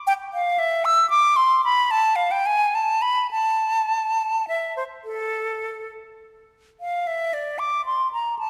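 Grave and introspective, this brief fragment of a baroque-style classical fantasia is played by a single silver concert flute. The flute sounds from 0.1 to 8.5 seconds, moving freely in rubato over a 12/8 metre and ranging from A4 up to E6. Its tone is bright and airy with a metallic sheen, shaped by expressive vibrato, soft attacks and lifted highs. Set up front in the mix, the flute rings into a moderate concert hall reverb with a lingering 2.2-second decay. At 6.8 seconds the opening material begins again, and the fragment breaks off soon after.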